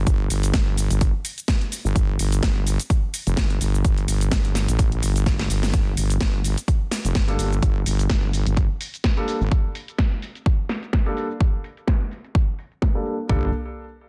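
Bass house with a gritty, bouncy swing, opening on a drop where a heavy, saturated sawtooth wobble bass with chorus and sidechain pumping sits up front against a punchy, tape-warm kick and toms, while a cracking snare, hi-hat and shaker sit lower behind low-pass filtering; a drum fill ends in a band accent at 5.6 seconds and leads into a filter sweep on the drums, and from 7.3 seconds worn, intimate grand piano stabs with audible action noise, delay and pumping enter under their own filter sweep, all set in a dense, heavily limited digital ambience.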